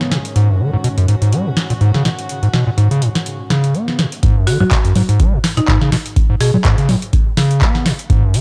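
A swung 124 BPM acid house groove in G# minor rides on a booming analog drum machine of congas, handclaps, crisp snare and metallic hi-hats, while an up-front, squelchy acid bass riff with tube saturation and analog delay runs through a filter sweep beneath sustained, reedy chamber strings that pump against the beat. At 4.2 seconds the drop arrives as the strings stop and a deep electronic kick enters, and a buzzing, woody marimba melody struck with hard mallets and echoed by analog delay appears from 4.5 to 7.1 seconds. The mood is hypnotic and raw, with a dry, gritty hardware sound and a cassette-tape character throughout.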